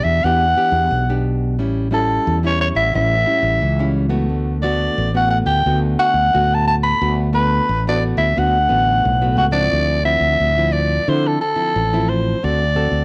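Bittersweet yet lively, this samba and choro piece, cut from a longer work, moves at 89 BPM in 4/4 with a growling, breathy soprano saxophone leading the jazz-style melody up front with scooped notes and light vibrato, over fingerpicked classical nylon-string guitar and a round, dark fretless electric bass, as the harmony moves from D major to D minor at 9.7 s, all set in a small room with moderate spring reverb.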